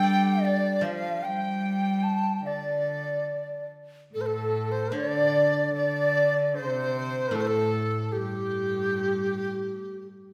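A wet recital-hall reverb surrounds this wistful, tender passage for a Chinese chamber ensemble, cut from a longer traditional piece and moving with a free, rubato feel in 4/4. A low, distant xiao carries the melody with a bright, reedy tone, using tongued notes and vibrato. A large dizi sings a second line, close-miked and up front, its breathy sound edged by the buzz of its membrane, with a soft attack and an unsteady vibrato. A single bowed cello adds another second line in a dark, gut-string period style with a smooth top, while a steel-string zither played with fingerpicks gives a ringing, silvery accompaniment until it stops at 9.7 seconds. The music shifts into a new section at 4.1 seconds, and the winds and cello continue together to the end at 10.1 seconds.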